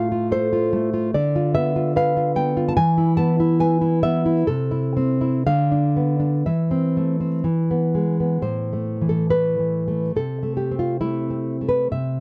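Melancholic and intimate, this romantic piece for solo classical guitar unfolds in a rubato 2/4, a short passage cut from a longer work. The nylon-string guitar sounds dark and full-bodied, its thumb-plucked tone up front and captured by close, detailed microphones in a dry setting with little reverb. The opening moves through shadowed chords such as Bdim/D and Am/E before settling on E, and a new section begins at 8.4 seconds on A5 and Am/C.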